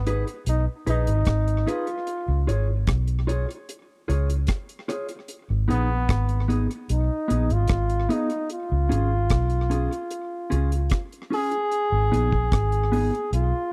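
A bright solo trombone with tape echo carries the melody over a hypnotic, serious roots reggae groove at 75 BPM in G# dorian, where a round, punchy foam-muted electric bass sits up front, a mellow, clean electric guitar with echo supplies accompaniment, and a dry drum kit keeps time with a tight kick, hi-hat and rim click, while the harmony circles between G#m and C# in this close, 1970s-style small-room recording cut from a longer piece.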